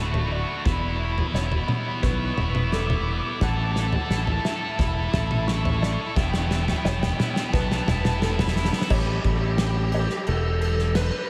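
Euphoric and hopeful, this post-rock excerpt moves at 87 BPM in a straight 4/4, cut from a longer piece and bathed in a huge ambient reverb that gives the whole mix a dreamy, soaked atmosphere. A dark, smooth overdriven lead guitar carries the melody across a range from G4 to D6, trailed by diffuse ambient delay, while a felt-muted upright piano sits in the background with soft, intimate arpeggios, its thin felt and audible action noise lending a hushed texture under its own delay. Beneath them, a very quiet, twangy twelve-string electric guitar picks compressed, clean arpeggios, and a double-tracked, distorted electric guitar drives a bright riff, both dropping out at 8.9 seconds. A growling fingered bass sits up front with a direct, amped overdrive, and a loose indie drum kit with a punchy kick, fat snare, dark cymbals and a pumping room sound builds through a drum fill with toms and crashes. 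The chords move from D through Em and A before the build-up resolves at 8.9 seconds onto an Aadd9, where the lead guitar, piano, bass and drums carry on briefly to the end.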